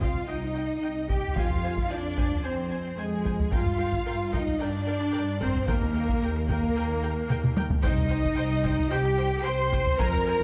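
Dark and dramatic, this epic orchestral film-score passage in C minor moves at a straight 111 BPM in 4/4, cut from a longer piece and built over Cm, Fm, Gm and Eb. A clear, intense violin section carries the melody from the background, joined by a second, focused violin line and a very quiet, hollow, airy flute group, while smooth, even violas accompany and a distant French horn section holds roomy sustained chords. Rich cellos and woody, up-front double basses anchor the bass beneath a heavy, close and dry taiko ensemble that plays a fill at 7.3 seconds, all set in a moderate scoring-stage reverb with a dark production.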